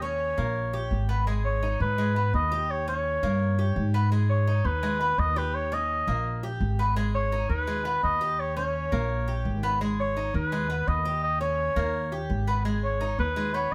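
A roomy, classical-style oboe carries the melody up front in this danceable, warm Cuban son and guajira passage in G# minor at 169 BPM, cut from a longer piece, while a metallic, double-strung tres picks arpeggios and a woody, thumpy pizzicato upright bass anchors the low end, all three playing throughout over a repeated sway between D#7 and G#m in a light reverb.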